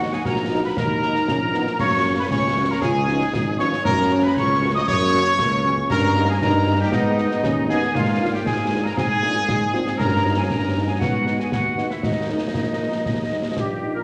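A resolute, martial military-style march for wind band at 117 BPM in 2/4, cut from a longer piece, where a clear, up-front trumpet section with light vibrato carries the melody over a pure, bright, close-miked flute section and a mellow, smooth-topped euphonium in the background on second lines, while a dark, distant French horn section adds very quiet accompaniment, a punchy tuba holds the bass, and close acoustic concert snare, bass drum and dark clash cymbals enter at 0.3 s, with a wet scoring-stage reverb around the band.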